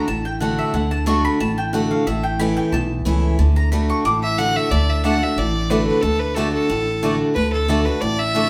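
A round, double-strung mandolin takes the spotlight in this joyful, driving bluegrass excerpt, its picked stabs carrying a solo over chords moving from D to A and back to D for the first 4.7 seconds. A bright, boxy parlour guitar with fresh strings sits up front, picked in straight time as the accompaniment. Beneath it, a pizzicato upright bass with gut strings gives a woody, thumpy, dark foundation in the low register. A clear fiddle, bowed by one player with light vibrato and an earthy tone, enters up front at 4.2 seconds and carries the melody into the next section. The band plays live in one room, and a wet stone-room reverb surrounds the ensemble.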